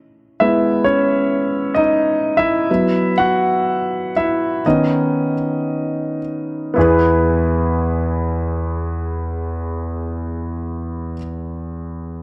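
A clear, intimate concert grand piano carries this tender, hopeful pop fragment in E major, playing alone from 0.4 seconds with deep bass, long sustain and audible action noise sitting up front in a dark, warm mix with light reverb and studio ambience. At a slow 54-67 BPM in 4/4, the opening slows down through its first 6.8 seconds as the harmony moves from E/G# to Bsus4 and Badd9, then settles onto E for a short second passage before the piano stops at 12.2 seconds.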